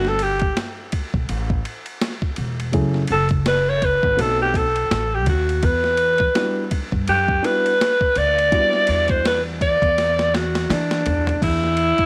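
A growling alto saxophone carries the melody, soloing from the start in a raspy, vibrato-laden jazz voice that sits up front yet sounds distant and roomy. This is a cool, nocturnal slice of jazz-hop in E minor at 83 BPM, with a lazy swing on the 16ths, cut from a longer piece. Beneath it, a dark, mellow concert grand piano plays vintage-sounding accompaniment with deep bass and short sustain until 9.5 seconds, while a woody, pizzicato upright bass on gut strings supplies the low end. The boom bap sampler-style kit is compressed, pitched down and gritty, pairing a thumpy kick with a high-tuned snare alongside hi-hat, ride, crash and toms, and it moves into a fill at 10.0 seconds before the harmony drops away at 11.4 seconds. The chords move from Gadd9 through F#m7 and B7b9 to a lingering Em9, all set in light reverb and studio ambience under a bed of vinyl crackle.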